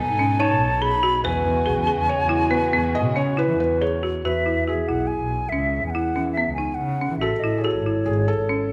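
A hollow, pure-toned silver concert flute carries the tongued, vibrato-laden melody up front in this shimmering, playful chamber piece in 7/4, joined by a felt-muted upright piano whose soft second line carries audible action noise, a rich bowed double bass, a dry, woody marimba struck with hard mallets entering at 0.2 s, and veiled con sordino strings holding lush background chords until 4.2 s, within the wet reverb of a recital hall.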